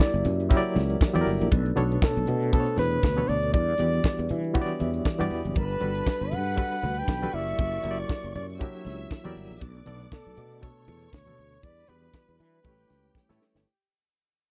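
A tight, dry funk drum kit with a high-tuned snare drives this glamorous, danceable disco cut in B minor at 119 BPM, lightly swung on the 16ths, while a growly, punchy fretless bass and very quiet, damped low congas fill out the groove. Up front, a barky, lightly overdriven reed electric piano with fast tremolo comps and adds a fill at 4.6 seconds, and a mellow tonewheel organ with key click and slow rotary sustains chords softly beneath. A dark, breathy flugelhorn carries the jazz-style melody through chords like Bm9 and Gmaj9, lush bowed strings join at 5.6 seconds, and the close 1970s-style sound fades out throughout before a closing drum fill at 13.2 seconds.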